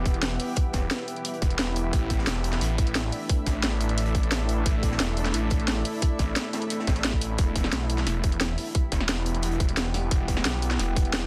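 A straight 4/4 pulse at 176 BPM drives this dark, aggressive technical drum and bass excerpt in E minor: a tight, up-front electronic kick and a cracking drum and bass kit of hi-hat and snare lead over a gritty, saturated breakbeat kit with a high-tuned snare in the background, while a snarling, distorted saw bass growls low, a deep, moody ambient pad with chorus holds sustained chords moving from Em to Asus4 and back, and a blurred granular cloud pad drifts behind, the bass and both pads carrying sidechain pumping in a dense, heavily limited mix with light reverb.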